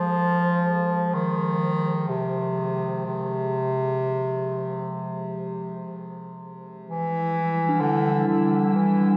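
A clear, distant bass clarinet carries a solo melody in free time over a very quiet, deep and moody pad of sustained chords, while a bronze singing bowl rings bright, metallic arpeggios with slow beating in the background, both the clarinet and the bowl trailed by delay. The harmony moves from G# to Em at 6.9 seconds; an icy, crystalline glass pad with chorus enters at 7.2 seconds, and a rumbling, warbling drone with a vintage, wave-folded edge comes in at 7.7 seconds. The whole dark ambient piece sits in a vast, echoing cathedral space, its mood ominous and immense.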